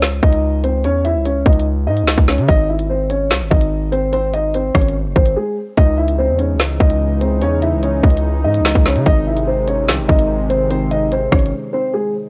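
A heavy, punchy 808-style bass and an up-front drill kit with hard-clipped kick, woody snare, rim click and crisp hats open this tense, menacing half-time drill excerpt, joined almost at once by a dark, boxy concert grand piano melody dulled by a low-pass filter and cassette tape, while a smooth, detuned sawtooth pad with chorus brings slow-attack sustained chords from 5.8 s, all set in light reverb with a home-cassette character.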